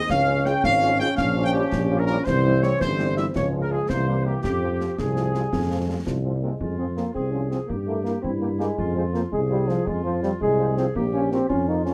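Stern and martial, this cut from a longer military-style wind band march in F minor moves at 110 BPM in a straight 6/8, with a clear trumpet section carrying the melody over a clear woodwind second line, a warm, up-front tuba bass, tight, soft-attacked trombone chords that stop at 6.6 seconds, a distant, roomy horn accompaniment in the background, close, dry snare, bass drum and dark cymbals, and a clear, lightly vibrato euphonium entering at 6.4 seconds; the harmony moves from Db and C7 onto Fm and later Bbm, all in a moderate studio reverb.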